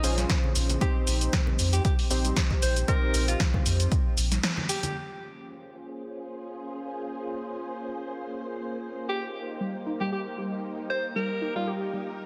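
A dense, heavily limited mix in a moderate echo-chamber reverb frames this smooth, late-night deep house passage, cut from a longer piece and carrying a lightly swung feel. In the opening, up-front snare, hats and shaker from a punchy analog drum machine join an electronic kick, ringing congas and bongos in the background, a deep sine-and-triangle sub bass with tube saturation, and round, detuned analog keys pumping through chorus and delay, while a breathy alto saxophone with scooped, jazz-style notes and tape echo carries the melody. From 5.0 seconds, silky string-machine chords under a filter sweep take over, and at 9.1 seconds the saxophone returns, shortly before a warbling, lo-fi pluck adds chorused arpeggios.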